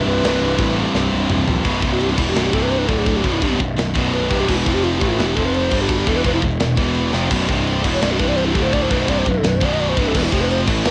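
Heavy metal at 170 BPM in B phrygian, epic and aggressive, cut from a longer piece and captured dry on a home cassette recording. After a brief half-time opening, where a very quiet high-gain lead guitar sounds only momentarily and a drum fill runs from 0.9 s, a breathy, hollow alto flute with vibrato and a crisp attack takes a solo from 1.6 s over three bright, picked guitars playing a low riff: one overdriven and set back, one heavy and distorted, and one double-tracked and very quiet. A growly fuzz bass sits up front, while a tight metal kit with a rolled-off top drives the piece with kick, snare, toms, crash and china cymbals, adding another fill at 7.1 s.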